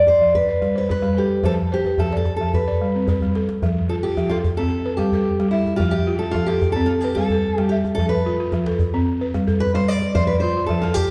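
Joyful and warm, this West African string and xylophone piece moves at 110 BPM in a straight 4/4, in F lydian, with the chords swinging between G and F throughout. A fingerpicked steel-string acoustic guitar, sparkling with fresh strings and sitting up front, carries the melody over woody, buzzing balafon arpeggios played with soft rubber mallets, while a tight, cracking djembe with metal rattles sits close. A drum fill at 3.2 seconds leads into a guitar solo from 3.6 seconds to the end, all set in the long, wet reverb of a concert hall.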